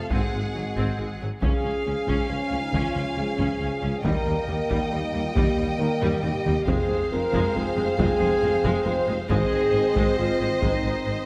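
Relentless and dramatic, this excerpt from an epic orchestral film score moves at 137 BPM in 3/4, with a lush violin section carrying the melody over a rich second violin line, tight French horns and background trombones holding sustained chords, clear violas in accompaniment, a dark, woody, very quiet cello section, distant double basses and a mellow tuba on the bass, a hard-struck taiko ensemble driving throughout with a fill at 6.0 seconds, and a round, soft-mallet timpani note at 6.7 seconds, all set in a moderate scoring-stage reverb as the chords move from Ab7 through Db, Eb and Fm back to Ab.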